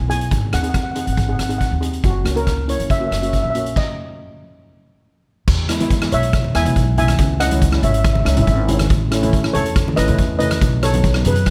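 A mellow, shimmering lead steel pan played with soft rubber sticks carries the melody over woody pizzicato upright bass from the start of this festive, carefree calypso excerpt in E major at 140 BPM, joined at once by a boxy double-seconds steel pan accompaniment and an airy, polished street-band drum kit sitting up front with a boomy kick, dark crash and hi-hat cymbals and rim clicks, before a stop from 3.8 to 5.5 seconds leads into a new section where very quiet, low-tuned congas played with soft hands enter at 5.8 seconds.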